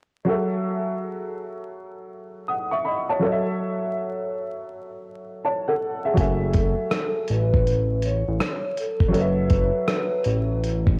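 Reflective and nostalgic, this lo-fi hip hop excerpt opens with a worn, woody upright piano playing alone, slightly detuned and softened by cassette tape and a low-pass filter. At 6.2 seconds the rest of the band arrives: a gritty, compressed sampler-style drum kit with a thumpy kick, hi-hat and rim click, and a fat, nasal analog bass built from detuned sawtooth and square waves with a saturated filter pluck. A vibraphone played with soft mallets enters at the same moment to carry the melody, its metallic ring and slow motor vibrato made mellow and vintage by band-limiting and tape. The harmony rests on F#m7 before shifting to B7sus4/F# at 9.1 seconds, and the drums, bass and piano sit up front over a lazy sixteenth-note swing. Light reverb, vinyl crackle and a home-cassette character wrap the whole track in a dusty haze.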